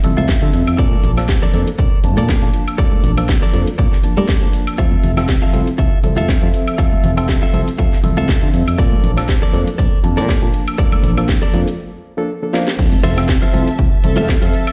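A punchy, up-front electronic kick drives this funky, feel-good filtered disco house groove at 120 BPM in F major, with a cracking house kit with metallic hats, background shaker and hard-hand congas, a growly fingered bass, a barky, lightly overdriven electric piano with fast tremolo, phaser and 12-bit grit, and a twangy clean guitar riff all pumping, most of them through a filtered haze, in a stone-room reverb, until a short break and drum fill give way at 12.8 seconds to a drop where a lush background violin section and, at 14.0 seconds, a bold, fat analog synth brass with chorus and delay join in.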